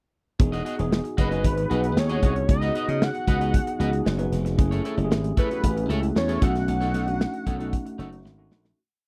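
Bittersweet and slick, this short, complete piece of polished 1980s jazz-funk pop moves at 115 BPM in a straight 4/4, moving through Emaj9, C#9sus4, F#m7 and B9. A punchy, up-front acoustic drum kit with a medium-tuned snare lays down a crisp sixteenth-note studio groove, while a bright, amped slap bass plays an agile syncopated line laced with chromatic approach notes. A worn, slightly out-of-tune tine electric piano, bathed in lush chorus, supplies syncopated rootless chords with grace notes and short fills, and an electric guitar at the edge of break-up adds twangy, fingered sixteenth-note rhythm parts, also chorused. From 1.2 seconds a fat, detuned sawtooth lead with a sub octave, a moving notch and vibrato sings a dark, sustained, motif-based melody in sentence-like phrases. The dry, close 1970s-style sound starts fading at 6.7 seconds, with an electric piano fill and then a drum fill closing things out.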